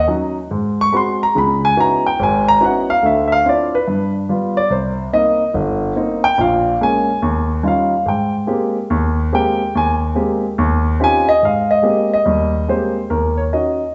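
A grand piano opens this solo jazz excerpt at a playful, swinging 143 BPM in Ab major, its warm tone sitting up front and ranging from deep bass notes to bright upper register. The harmony moves through rich extended chords such as Dbm11, Dm9 and Eb13 before settling on Abmaj9, with a fresh section arriving at 11.4 seconds and the passage returning to Ebm7 near its close at 13.9 seconds. A wet recital-hall reverb surrounds the instrument in a church-like space, and the recording's top end is softly rounded off.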